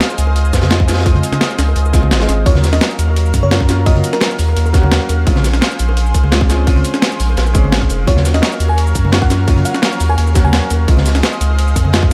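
A felt-muted upright piano with dub echo and a lush, detuned unison pad with chorus and sidechain pumping open this melancholic liquid drum and bass excerpt at 171 BPM in Eb dorian, over a gritty, compressed sampler-style breakbeat kit and a dark, high-passed crunchy breakbeat kit in the background, soon joined by a deep, saturated sub bass up front, soft-handed bongos and congas, and a tight, overdriven electronic kick, while a sparkling, bell-like FM electric piano with chorus and dub echo carries the melody in short phrases from 2.5 s and 8.1 s through Dbmaj7, Ebm7 and Bbm9 chords in a small room ambience.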